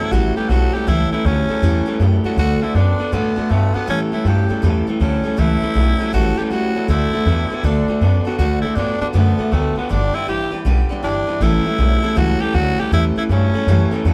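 A raspy, growling tenor saxophone carries the melody from the opening of this rowdy, rollicking rockabilly excerpt. It is joined at once by a bright, full-bodied picked jumbo acoustic guitar, a twangy, slightly broken-up electric guitar riff from a small old amp, and a woody, thumpy pizzicato upright bass sitting up front in a swung 4/4. The sax sings with vibrato and a smooth top over chords moving among A7, D and G, as the band plays live together in a stone room with moderate reverb.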